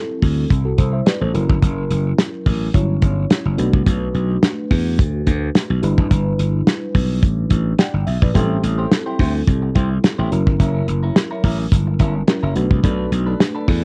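Dry, cassette-taped home recording of early-eighties boogie funk with a slick, late-night mood, cut from a longer piece. A dark, round FM electric piano with chorus opens at 0.0 s and plays a short fill at 7.5 s, while a bright, growly slap bass and a damped 70s drum kit with a tight kick and rolled-off top sit up front. At 8.3 s a clean, twangy electric guitar enters with a quiet, compressed riff touched by subtle chorus.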